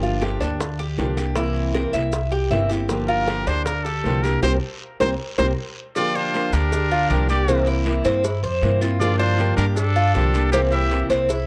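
Latin music in the Cuban son and guajira tradition, this danceable, sunny clip is cut from a longer piece and moves in a straight 4/4 over a Gm7 to C7 vamp. A woody, pizzicato upright bass sits up front, while a metallic Cuban tres with double strings spins arpeggios above a dark, picked steel-string acoustic guitar. In the background, tight, high-tuned bongos and cowbell struck with hard hands join at 0.2 seconds alongside a raspy guiro, with grainy maracas close and dry beneath them. A trumpet with a straight mute enters at 3.1 seconds with a nasal, breathy, jazz-style melody, its vibrato and smooth top carried by an analog delay. The band hits an accent from 4.4 seconds, and a drum fill joins at 5.0 seconds to lead into the second section at 6.0 seconds, where a punchy, bright trumpet adds a pop-style second line lower down. The whole mix has a worn, warbling cassette character with pitch drift, set in a small room with moderate spring reverb.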